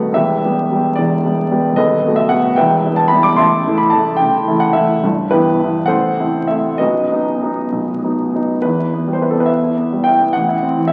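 A grand piano opens the recording alone, its tone warm, smooth and vintage, placed up front and heard through the crackle of a very old 78 rpm record. This is a romantic character piece for solo piano in E minor, cut from a longer work, with a passionate, stormy mood. It moves in 6/8 at roughly 64-76 beats per minute counted in dotted quarters, and the rubato lets the pulse breathe and pull. The harmony circles E minor through B7, A, A minor and B before a new section begins at 8.6 seconds, returning to E minor and then reaching A minor at 10.3 seconds, shortly before the excerpt ends at 10.9 seconds. The piano spans from its deepest bass up into the upper middle register, and a wet recital hall reverb gives the sound a lingering, resonant space.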